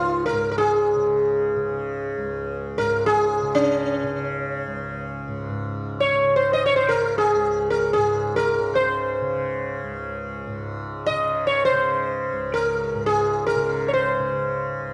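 A sitar and a tanpura sound together from the very start of this Hindustani classical excerpt, played in free time with a radiant, meditative mood. Up front, the sitar carries the melody between Db4 and Eb5 with a round, plectrum-plucked tone, its buzzing and sympathetic strings giving off a shimmer, while the softly plucked tanpura holds a bright, buzzing drone from Db2 to Db3 further back. A wet recital hall reverb with an RT60 of 1.4 s wraps the pair in a dark, warm production, and the passage, tuned to A4 = 439 Hz, restates its opening material at 5.5 seconds.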